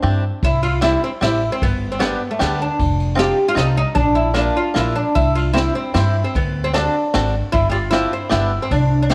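A 3/4 musette waltz at 152 BPM in C major, played with a rubato feel, this charming, nostalgic fragment of a longer piece sets a plectrum-plucked, fretless oud up front with a deep, double-strung voice carrying the melody, while a bright, twangy bluegrass banjo played with fingerpicks adds percussive accompaniment. A pizzicato upright bass with dark, thumpy steel strings sits up front alongside the oud, and from 0.4 seconds a small-room jazz kit played with brushes joins in, pairing a boomy kick and high-tuned snare with dark ride cymbal. Light reverb frames the acoustic ensemble as the harmony moves from C through G, F7 and Bb, back to C and on to D7, before reaching G7sus4 at 7.5 seconds and settling on G6 at 8.3 seconds.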